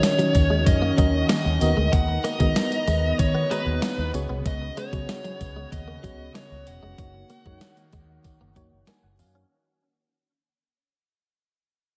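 A dreamy, reverb-soaked sound fills this short cut from a longer 1980s-style pop piece in F# major, moving at 95 BPM in a straight 4/4 with a nostalgic, romantic mood, and the whole passage fades out across its 9.5 seconds. Up front sits a clean 12-bit digital drum machine with a thumpy kick, medium-tuned snare, hi-hat and tambourine, its tape-warm, sampler-style hits carrying the ambience of a large room, while a very quiet, jingly acoustic tambourine adds a faint shimmer. A vintage muted fingered electric bass gives round, foam-muted low notes, and a twangy, direct-recorded clean electric guitar with analog chorus plays a compressed, picked riff in the background. A swirling, detuned sawtooth pad with phaser and chorus holds sustained chords through D#m7, Bmaj7, C#7sus4 and F#6, beside a decaying FM electric piano with tremolo that slips in a fill at 8.6 seconds. Over it all, a dark, smooth lead guitar with overdrive and analog delay sings the melody between B4 and F#5 until 8.8 seconds.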